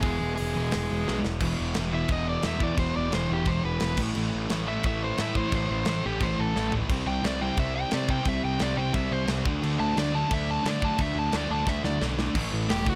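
Dry, with little reverb, this rowdy, rebellious punk rock excerpt at 175 BPM opens in half time before an up-front, overdriven lead guitar takes a solo from 1.4 to 12.4 seconds over riffs from three sludgy distorted guitars (one dark in the background, two very quiet, one of those double-tracked), a bright, punchy fuzz bass up front, and a tight metal drum kit with a medium-tuned snare and rolled-off top that adds short fills, as the chords move through E, A, C and D.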